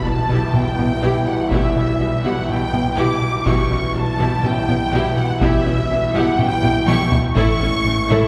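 Relentless and vast, this 123 BPM hybrid orchestral and electronic film-score fragment opens with a very quiet electronic impact as lush bowed violin sections carry the melody and a second line high above a vibrato-rich viola bed, background French horns and very quiet mellow trombones in sustained chords, very quiet cello and dark double bass sections, a growling distorted saw bass, a rubbery, nasal square-bass riff and heavy-stick taiko drums with a fill at 6.6 seconds, all moving from Em/B through C#dim/B to A in a spacious scoring-stage reverb heard from further back.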